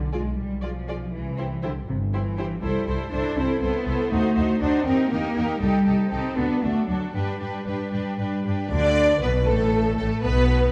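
A bowed double bass section with light vibrato and a smooth, even cello section open this lively, spirited classical-period movement for string orchestra, a quick 6/8 in G major at 80 BPM, cut from a longer piece. At 0.1 s the violins enter, one section carrying a focused, lush melody with vibrato and the other adding a second line, while an intense, clear viola section fills in the accompaniment. The harmony darkens through D7b9 and Eb before settling on G at 7.1 s, then turns to Bm and leaves chords behind at 9.5 s, all within the moderate reverb of a scoring stage and a dark, warm production.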